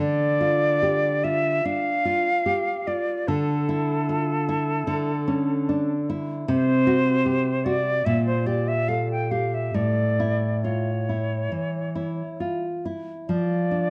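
Rubato 4/4 pulse drifting between 67 and 78 BPM carries this elegiac, yearning romantic duo in D minor, where an airy, bright concert flute sings the melody with vibrato and a soft attack, close and up front, over a full-bodied fingerpicked nylon-string guitar whose fresh strings and audible finger squeaks ring through a moderate recital hall reverb in a dark production, the harmony moving from Dm through D7/C and Gm/Bb to A before settling on Dm/F at 13.3 seconds in this brief cut from a longer piece.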